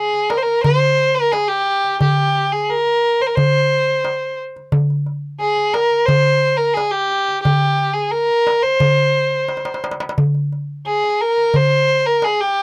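A dry, close studio sound in the manner of the 1970s, touched by light reverb, frames this melancholic, longing fragment of an Arabic maqam ensemble piece in a straight 4/4. A single bowed violin carries the melody up front between G4 and C5, its tone rich, smooth and even, colored by vibrato, while a crisp, metal-shelled darbuka, compressed and saturated, sits equally close and is struck with hard hands. The drum breaks into a brief fill from 9.5 to 10.2 seconds before the passage ends.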